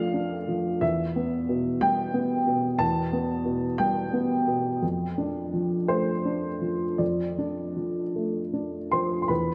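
A wet concert-hall reverb, with a 2.3-second decay, surrounds a warm, woody, slightly detuned upright piano that sits up front. This short fragment of a longer neoclassical minimalist piece runs just under ten seconds, with the piano playing solo from start to finish. The mood is intimate and melancholic. The music moves in 6/8 at roughly 52-62 BPM, counted in dotted quarters, with a loose rubato feel. Set in D dorian and spanning E2 to C6, the harmony opens on Dm/F, shifts to Em at 0.8 seconds, and settles back onto Dm/F at 4.8 seconds.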